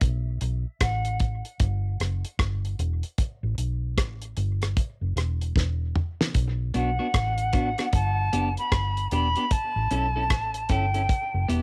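Meditative and deep, this dub reggae excerpt moves at a relaxed 76 BPM with a swung 16th-note feel, built on a dark, round, foam-muted fingered electric bass and a damped 70s drum kit with a fat snare, tight kick, rim clicks and toms, which closes its opening break with a fill at 5.6 seconds. A pure, vibrato-rich concert flute sounds briefly at 0.8 seconds and then returns at 6.8 seconds with a distant, tongued line soaked in dub echo and cassette tape colour, while a bright, twangy, compressed clean electric guitar enters at 6.7 seconds with a picked accompaniment part carrying the same echo and tape character. The home cassette recording sits close and nearly reverb-free, with a rolled-off top on the drums and the low end kept up front.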